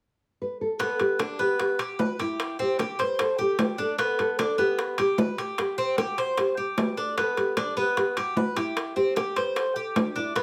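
A dark, thumb-plucked nylon-string guitar opens the melody at 0.4 s before a metallic, double-strung Cuban tres joins with picked arpeggios, ringing metal-shell timbales sit up front, and tight, high-tuned bongos sit in the background, all within a sunny, danceable Cuban son and guajira groove that alternates between G and C5 in a moderate studio reverb throughout this brief cut from a longer piece.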